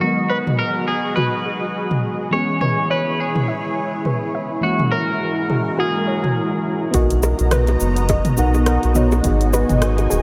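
A round, deep analog bass sits up front once it arrives at 6.9 seconds, joined by a punchy electronic kick in the background and very quiet bongos, low-tuned, close and dry. Before that, this wistful, smooth sunset chillout excerpt opens with a clean, picked electric guitar carrying the melody over a mellow FM electric piano treated with chorus, phaser and analog delay. A lush, detuned unison pad holds bright sustained chords beneath them. A soft pluck plays gentle arpeggios in the background under a filter sweep, while a layered deep house kit of hi-hat, rim click, shaker and toms brings a swung sixteenth-note feel. The guitar drops out at 6.6 seconds as the harmony moves from G#m7 through C#m7 and F#9 to Bmaj7, and a cathedral reverb soaks the mix in a dreamy wash.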